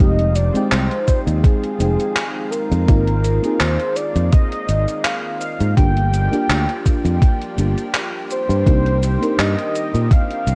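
An overdriven, thumpy electronic kick drum sits up front in this melancholic, nostalgic vaporwave excerpt, entering at 1.1 s with a sampler-style crunch that sounds re-recorded in a small room. Moving at 83 BPM in 4/4 with a light swing on the sixteenths, the piece sits in C minor, tuned to A4 = 438 Hz, and cycles through Fm7, Ab69, Gm7 and Cm7. A growly, punchy fingered electric bass is also up front, while a gated 80s digital drum machine joins at 0.2 s with cabasa, handclaps and hi-hat, its gated reverb and 12-bit grit carrying a tape-softened tone. A velvety synth lead with vibrato and a sub octave carries the melody through chorus and tape echo, over a soft, round FM electric piano whose dark, decaying chords are coated in lush chorus and vintage sampler grit. In the background, a thick, detuned unison pad holds sustained chords with a slow attack and long release. The whole mix is wrapped in a hazy digital ambience with the worn character of cassette tape.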